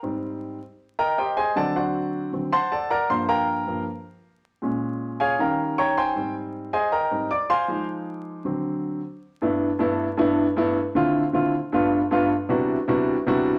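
A warm, natural-toned baby grand piano plays alone and up front, its short-sustained chords moving through rich jazz harmony such as Abmaj9, D7b13 and Eb13 in a sophisticated, danceable fragment cut from a longer piece. At 9.2 s the music settles onto G69 and turns toward Dm9, G9 and Cmaj9#11 before the piano stops at 13.5 s. A wet, large-studio reverb and a layer of vinyl crackle give the recording a vintage, roomy character.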